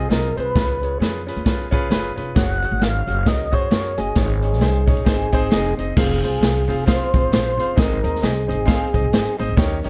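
A swinging 4/4 pulse at 133 BPM drives this joyful, uplifting slice of uptempo 1960s-style soul, cut from a longer piece and running just under ten seconds. A big-band drum kit sits up front with a boomy kick, medium-tuned snare, hi-hat and crash cymbal, entering at 0.1 seconds in a natural studio room. Beneath it, a pizzicato upright bass with gut strings gives a woody, thumpy low end, while a warm baby grand piano fills in accompaniment with a natural, short-sustained tone. The tonewheel organ carries the melody, lightly overdriven through a slow rotary speaker, its clear tone marked by vibrato and key click before it drops out at 9.4 seconds. The harmony moves from F minor through Db7, Gbsus2 and Absus4 to Ab, then returns to F minor at 6.0 seconds for a second section that resolves on Ab, all within a dark, warm production.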